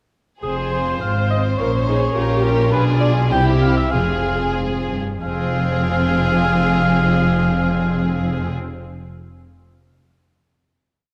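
A solo cor anglais with a light vibrato carries a classical-style melody through this short, dramatic and urgent piece for symphony orchestra, its tone sitting prominently above the strings. Beneath it, a focused violin section with a smooth top shares the melody, while a second, more distant violin section holds sustained chords in the background. A viola section adds an even counter-melody, and a cello section with portamento and vibrato plays a sustained bass with passing notes, doubled by a close, expressive double bass section. The harmony moves from F minor through diminished colours to a C chord and back home, as the flexible rubato pulse slows between 2.2 and 5.2 seconds before a final chord held from 5.2 to 7.8 seconds. The strings have a rich, bowed ensemble sound, set in a moderate scoring-stage reverb that gives the whole piece a dark production.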